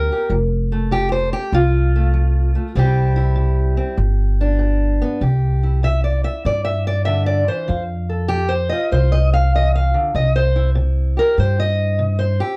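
A loping swung 4/4 carries this gritty, laid-back acoustic country blues, cut from a longer piece, as a dark, boxy parlour steel-string guitar is fingerpicked up front, taking the melody as a solo from 0.0 to 12.6 seconds. Beneath it, a pizzicato upright bass with gut strings gives a woody, thumpy low end, sitting slightly louder than the guitar and stopping at 12.4 seconds. The dry, close 1970s-style studio sound keeps both players intimate through two matching passages built on F, C and G chords.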